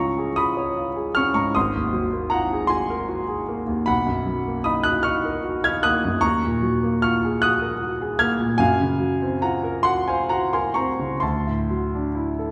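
Classical impressionist solo piano, serene and luminous, drifting in a rubato 6/8 at roughly 42-53 BPM in dotted quarters, as a smooth, vintage-toned concert grand with deep bass sits up front in a recital-hall reverb and glides through lush extended harmonies from Db6 and Ab13 to Gbmaj7#11 before settling on D9 near 11.2 seconds in this brief fragment of a longer piece.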